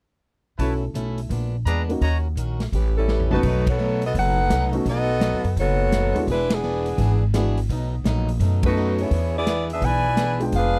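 Swinging and brassy, this big band jazz excerpt moves at a brisk 169 BPM in B mixolydian, with tight, bright trumpet stabs punctuating the first section before a drum fill at 3.1 seconds leads into the second section. A clear, up-front saxophone section carries the melody with vibrato from 3.0 seconds, and full-band accents punctuate the passage. Beneath it, a woody, growly pizzicato upright bass, a boxy picked acoustic guitar, a warm grand piano and a polished drum kit with a punchy kick keep the swing going in a dry, close 1970s-style studio sound.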